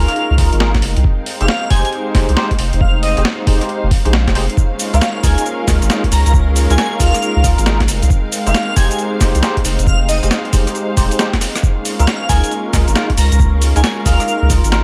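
UK garage in a two-step groove at 136 BPM, this skippy, late-night excerpt in F minor swings its sixteenths over a soft, round dub sub bass sitting up front and a gritty, pitched-down sampler kit whose thumpy kick and high-tuned snare were re-recorded in a large room, with a drum fill at 11.4 seconds. A bell-like, barky electric piano punches out clean stabs through ensemble chorus and tape echo, while an airy, dreamy sine lead with a noise layer and vibrato floats its melody through chorus, phaser and tape echo. Beneath them, a very quiet detuned sawtooth pad holds smooth sustained chords and a veiled, con sordino string section pumps with sidechain, all moving between Db6 and Fm7 in a digital ambience.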